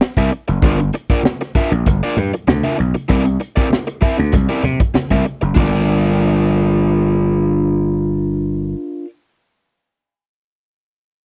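Funk at 97 BPM in G dorian, a hypnotic, sly excerpt from a longer piece, moving through C7, Gm7 and C9 and recorded dry and close in a 1970s-style studio. A gritty, growly slap bass with overdrive and a crunchy, picked overdriven guitar sit up front over a saturated breakbeat kit with a high-tuned snare, tight kick, dark cymbals and a rolled-off top. Thick-skinned, low-tuned congas played with soft hands linger distantly in the background from 0.6 to 5.9 seconds, and the drums drop out at 5.7 seconds as the music shifts back to Gm7.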